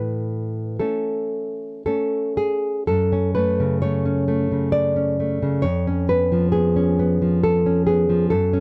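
A romantic solo classical guitar piece in F# minor, cut from a longer work, with a sunny yet nostalgic mood and an unhurried rubato pulse in 3/4 at around 55-68 BPM. A single nylon-string guitar, thumb-plucked with a warm, up-front tone, spans E#2 to D5, moving from an A chord to F#m at 2.9 seconds and reaching C#7/E# at 5.6 seconds. The close, dry 1970s-style studio sound carries just a light touch of reverb.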